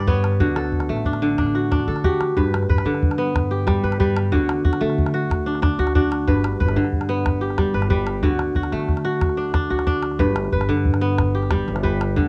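A crisp, ringing kora sits up front, its fingerpicked arpeggios carrying a cassette-tape tint over a hypnotic, joyful stretch of West African string music at 122 BPM in a straight 12/8 feel. A woody, growly pizzicato upright bass and a small, close calabash play underneath as the harmony alternates between D and G in G major, with a new section arriving at 2.4 seconds. Cut from a longer piece, this home recording on cassette carries a moderate studio ambience.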